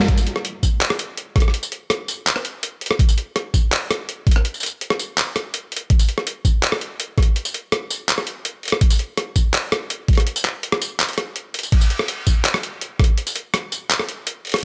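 A full-band accent at 0.0 seconds launches this dark, cinematic half-time drum and bass excerpt at 165 BPM, where a gritty, overdriven, sampler-style boom bap kit of crash, handclaps, hi-hat, rim click, medium-tuned snare and tambourine sits up front beside a thumpy, compressed electronic kick, both re-recorded in a small room and bathed in light reverb, driving a drop that pauses for a brief break at 11.4 seconds before the kick drops out at 13.1 seconds.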